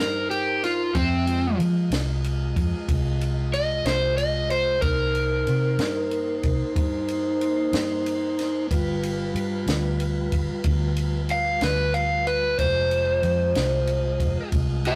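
Slow blues in C minor, this smoky, mournful passage moves at 62 BPM in a straight 12/8, cut from a longer piece. An overdriven semi-hollow guitar carries the melody up front, its dark, picked hollow-body tone ranging from C4 to F5. Beneath it a mellow tonewheel organ holds sustained chords with a soft, flute-like voice turning through a slow rotary speaker, while a foam-muted fingered electric bass sits close and punchy with a round, dark amped sound. A compact cocktail drum kit keeps time with dry, natural kick, ride cymbal and a high-tuned snare. The chords move from Cm7 to Fm7, back to Cm7 at 4.8 seconds, then to G7 and Fm7, all heard through moderate studio reverb and the rough, saturated character of a rehearsal room.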